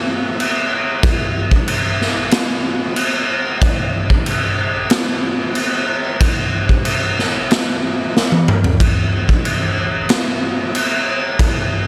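A straight 4/4 pulse at 93 BPM drives this short metal fragment, cut from a longer piece, with an ominous, brooding mood. The only part is a raw garage drum kit, entering at 0.4 seconds and playing until 11.5 seconds, built from crash cymbal, kick drum, snare drum and toms. The acoustic kit sits up front, its boomy kick and medium-tuned snare given a saturated, gritty edge. A bright stone room surrounds the drums with a pumping character, and a light reverb adds a touch of space. A drum fill at 8.1 seconds breaks the groove before the pattern carries on toward the end of the clip.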